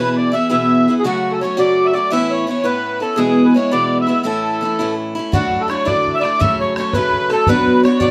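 Lively and bright, this Celtic jig in 6/8 is cut from a longer piece, with a reedy, sweet accordion carrying the melody up front over a picked, parlour-style steel-string acoustic guitar. In the background, a breathy, mellow metal whistle adds a second line with vibrato, tongued chiff and rolled-off highs. A damped, tight bodhran enters at 5.3 seconds. The accordion has light tremolo tuning and a vintage, band-limited character, and the ensemble sits in a wet studio reverb.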